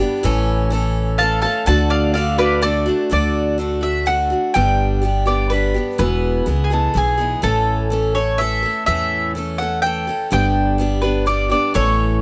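Honky-tonk and classic country in an easygoing, down-home 3/4 at 125 BPM in D major, where a bright, boxy picked parlour acoustic guitar with audible finger squeak opens, a woody pizzicato upright bass joins at 0.2 s, and a picked, double-strung mandolin enters at 1.2 s to carry the melody, all three sitting up front in a dry, close 1970s-style studio sound.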